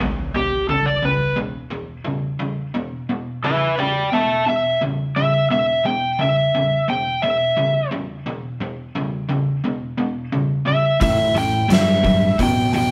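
Blues rock power-trio and southern rock at 87 BPM in E minor, heavy and smoky, opens on a double-tracked hollow-bodied semi-hollow guitar riff over E5, joined at 0.4 seconds by an up-front slide guitar melody, before a growling overdriven fingered bass and an oversized, low-tuned drum kit with a fat snare and punchy kick arrive on A5 at 11.0 seconds, all played live in a stone room with moderate reverb in this short cut from a longer piece.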